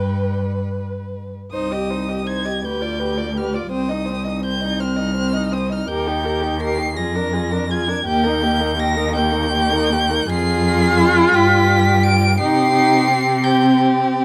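A dark, woody first violin carries the melody high above the ensemble, its close, vibrato-rich tone giving this slow romantic string quartet movement a yearning, solemn character. Beneath it, the second violin sings a soft-edged, expressive second line with gentle portamento, while a rich viola supplies the inner accompaniment from a more distant position. A warm cello anchors the bass with its own vibrato and sliding portamento, sitting slightly forward in the balance. The uneven 6/8 pulse stretches and bends with rubato, and after a brief opening chord the harmony moves through a minor-key progression before settling back onto its home chord near 12.4 seconds. The first violin falls silent at 13.8 seconds as the lower three strings continue to the end of this fragment from a longer piece, all set in a light reverb.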